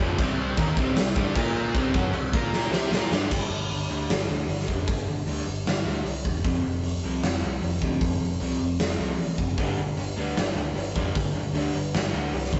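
Anthemic and powerful, this hard rock passage at 153 BPM in 4/4 opens with a very quiet, shouting tonewheel organ holding sustained chords through a slow rotary speaker with key click, a double-tracked overdriven electric guitar and a tight distorted guitar riffing in the background beside a hollow-body semi-hollow guitar with spring reverb, while a growly, direct picked bass and an up-front acoustic kit with a punchy kick and bright cymbals in a stone room carry the beat, a drum fill at 2.5 s leading into a new section where the organ and double-tracked guitar fall away at 3.3 s and the tight guitar returns at 9.6 s, the whole captured as a rough rehearsal-room recording with tube saturation and a dull top end.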